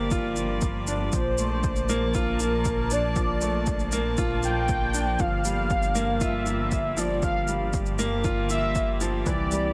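Set in a small room with light reverb, this melancholic, hypnotic piano and strings electronica moves at 118 BPM in G dorian: a veiled, con sordino string quartet sustains chords with sidechain pumping, a present grand piano with long sustain plays a riff through delay, a deep, rumbling detuned saw bass also pumps beneath, a punchy, overdriven electronic kick and shaker drive the beat, and from 1.1 s a velvety, chorused synth lead carries the melody with delay as the harmony moves between Gm7 and Bbmaj7.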